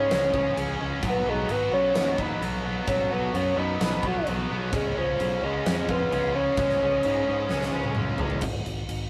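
A dark, smooth-topped bassoon with light vibrato leads up front in classical style, its solo melody riding over a menacing, aggressive hard rock groove at 130 BPM in straight 4/4, moving from C#5 power to B and back to C#. Beneath it, three bright, picked rhythm guitars, one very quiet and overdriven, one overdriven in the background, and one double-tracked and distorted, drive a shared riff, while a murky fuzz lead guitar adds a second line, a growly fingered bass holds the low end, and a polished arena drum kit with a fat snare, punchy kick and bright cymbals closes with a fill from 7.5 seconds. The fragment has a rough rehearsal-room character, with saturation, a small room's reverb and lossy compression artefacts.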